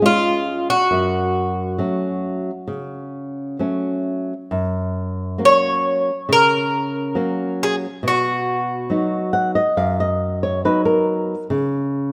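Moving in a free, rubato 4/4 at 68 BPM, this tender, nostalgic fado-style ballad excerpt shifts from F# harmonic minor into F# major at 4.5 s, moving through C#, F#m, F# and B chords before falling away to an open, chordless close. An up-front Irish bouzouki carries the melody with a metallic shimmer from its picked double strings until 9.3 s, while a dark, boxy flamenco guitar accompanies with thumb-plucked strings and audible finger squeak, and a nylon-string guitar fill arrives at 8.9 s. Close, detailed microphones catch every string nuance inside a moderate scoring stage reverb.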